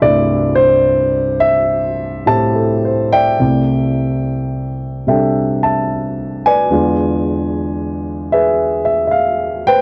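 Light reverb and a cassette-tape grain frame this sophisticated, relaxed fragment of solo jazz. A dark, mellow grand piano sits up front and plays from start to finish, ranging from C2 to A5 with a swung, rubato feel. It opens on a C6 chord, moves into a new section at 3.4 seconds, and turns to an E7b9 at 6.7 seconds before the cut at 9.8 seconds.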